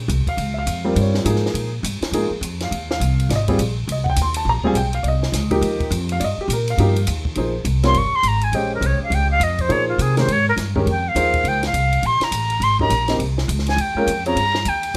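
Intense and hypnotic, this modal jazz excerpt swings briskly at 206 BPM in Bb dorian, with a woody pizzicato upright bass and a compact cocktail drum kit of dark cymbals, high-tuned snare and punchy kick setting the pulse from the start. An intimate, slightly detuned upright piano with audible action noise comps over Bbm9 and Cm7 chords, and at 7.9 seconds a breathy, bright concert flute enters up front with a tongued, straight, somewhat unsteady tone for its solo. Light reverb lends a modest sense of room.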